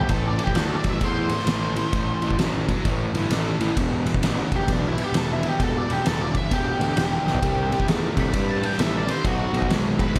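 Blues rock and southern rock power-trio excerpt, brooding and heavy at 131 BPM in E minor with a swung 4/4 feel, where a dark octave-fuzz lead guitar solos throughout with slapback echo over a double-tracked crunchy overdriven guitar riff, a growly, bright fuzz-picked bass, and an oversized low-tuned acoustic drum kit sitting up front with a punchy kick, fat snare, dark cymbals and a fill at 7.2 seconds, while a thick, very quiet overdriven tonewheel organ with gritty slow rotary swirl slips in with sustained chords at 3.8 seconds, all in a small room with light reverb.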